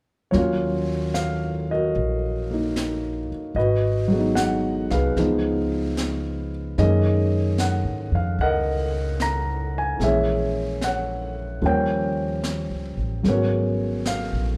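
Jazz ballad in Eb minor at 74 BPM with a gentle swing, melancholic and wistful, where a dark, mellow grand piano sits up front with audible action noise, comping through chords like Ebm9, Gb69 and Abm11 over a woody, thumpy pizzicato upright bass and a smooth brushed kit with a high-tuned snare and hi-hat, all three playing from 0.3 to 14.6 seconds in the moderate reverb of a recital hall.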